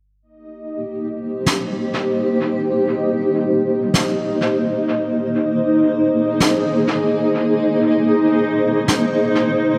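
Spacious and meditative, this ambient dub excerpt drifts from Cm7 to Bb9sus4 as a bubbling, resonant sawtooth texture with random filter steps and chorus opens at 0.2 seconds. A blurred, evolving granular cloud pad of detuned triangle tones with a moving notch holds mellow sustained chords up front from 0.8 seconds. From 1.5 seconds a high-tuned acoustic snare played with brushes sits forward in a natural room sound, thrown into dub echo, while a moderate plate reverb and a faint mains hum fill out the echo-heavy mix.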